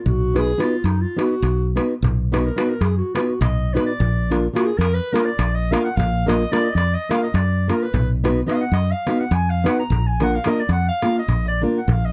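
A restless 7/8 groove with a straight feel drives this Balkan wedding-band folk piece, cut from a longer performance. A mellow, distant clarinet carries a virtuosic classical-style solo from 0.0 seconds to the close at 12.1 seconds, sounding roomy and set back in the mix. Up front, a fingered electric bass gives a bright, direct, punchy low end with a foam-muted edge. Beside it, a thumb-plucked nylon-string guitar supplies classical-style acoustic accompaniment, its tone warm, with audible finger squeak. A metal-shell darbuka, played with hard hands, adds crisp percussion with a vintage, band-limited character. The harmony moves between B and Bb, and a light reverb surrounds the band.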